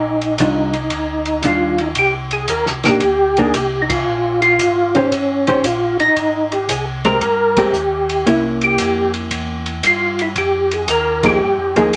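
A dark, clean studio sound with moderate reverb frames this 12-second cut from a longer soul jazz organ trio piece in C minor, swinging at 114 BPM in 4/4 with a soulful, swinging mood. A percussive tonewheel organ carries the melody up front from the start, its round tone shaded by third harmonic percussion, chorus vibrato and a slow rotary speaker. Underneath, a second, mellow tonewheel organ plays the bass line with audible key click through its own slow rotary speaker, sitting low in the mix. A compressed hollow-body jazz guitar, fingered and clean, enters at 0.4 seconds to comp as accompaniment, while an acoustic soul drum kit in a tight, pumping room adds a fat snare, tight kick and dark, rolled-off cymbals on hi-hat and ride. The chords move from Ebmaj9 through Cm9, Bbm9 and Abmaj9 to C7b9 and Fm11, and the whole band hits accents together at 3.8, 7.5 and 11.1 seconds.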